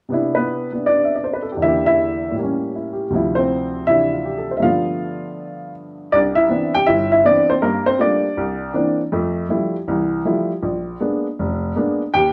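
Solo jazz in C major at 160 BPM with a lively 4/4 swing, this playful, sophisticated excerpt features a warm, woody upright piano placed up front, whose short-sustain tones move through rich extended harmonies such as Cmaj9, A7b9, G9 and Fmaj9 from 0.1 to 12.3 seconds, captured live in a large studio with moderate reverb.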